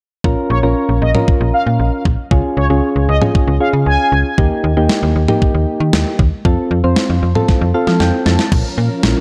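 A snappy, slap-like FM bass with a metallic attack drives this melancholic synth-pop excerpt at 116 BPM in Bb dorian, riding the chords Bbm, Db, Eb and F before returning to Bbm. Beside it sits a clean 12-bit drum machine with a thumpy kick, a medium-tuned snare, crash cymbal and toms, overdriven and re-recorded in a large room, which plays a fill from 7.5 to 8.5 s. Soft, round electric-piano-like synth keys carry the accompaniment with a gentle chorus and add their own fill in that same stretch. Above them, an analog synth brass line, bold and fat with vibrato, chorus and digital delay, plays a mellow second part from 0.5 to 4.2 s. At 8.5 s a vintage, organ-like ensemble string enters with sustained chords colored by phaser and ensemble chorus. A moderate concert hall reverb wraps the dark production.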